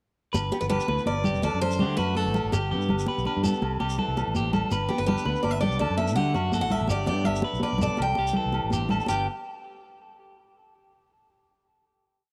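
A bright, full-bodied picked steel-string acoustic guitar carries motif-based song phrases up front in this sunny, carefree 12/8 highlife piece, set over a twangy, slightly broken-up electric guitar ostinato with analog delay, a clean electric guitar's syncopated fingerstyle accompaniment in the background, a direct, syncopated fingered electric bass riff, thick-skinned congas, a grainy shekere and ringing agogo bells tapping out a low time line, heard as a home cassette recording in a small room before closing on a final chord at 9.1 seconds.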